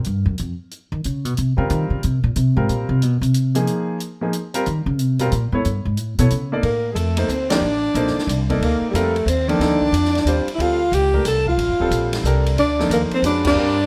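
Swinging in a lilting three, this cool, hypnotic modal jazz excerpt opens with a woody pizzicato upright bass playing solo, backed by a small-room drum kit with dark cymbals and a boomy kick, while an intimate grand piano with audible action noise and deep bass joins at 1.6 seconds. At 6.6 seconds a breathy, close-miked tenor saxophone takes the melody in a whispered subtone with scooped notes and vibrato, as a clear alto saxophone traces a second line in the background. The band hits accents together at 7.5 and 13.4 seconds under light reverb.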